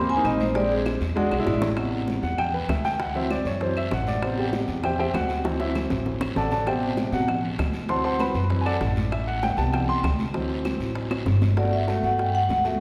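A warm concert grand piano with a deep low end takes a lively, danceable Afro-Cuban jazz solo from 1.8 to 11.6 seconds over a repeating Am7 to D7 vamp, resolving to Gmaj9. A metallic vibraphone played with medium hard mallets and medium motor vibrato opens the excerpt until 0.8 seconds and returns at 11.6 seconds. A growly, dark pizzicato upright bass sits up front, while round, close bongos, distant, high-tuned congas and woody claves stay in the background alongside a raspy guiro, all bathed in a wet concert hall reverb.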